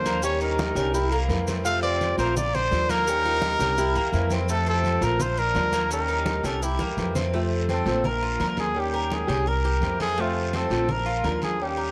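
Moving in a straight 4/4 at 169 BPM, this sunny Cuban son and guajira excerpt in F major rides on dark, woody pizzicato upright bass up front, low-tuned, damped congas, a raspy guiro and grainy maracas that drop out at 7.3 seconds after a short drum fill. A boxy, picked archtop guitar with audible finger squeak fills the accompaniment and a bright, metallic Cuban tres with tape echo adds arpeggios, while a full-bodied fingerpicked nylon-string guitar adds a brief second line in the background from 0.8 to 4.4 seconds. Above it all, a clear, punchy trumpet with vibrato and a cassette-tape tint carries the melody and takes a solo from 7.3 seconds, the whole home cassette recording bathed in moderate spring reverb.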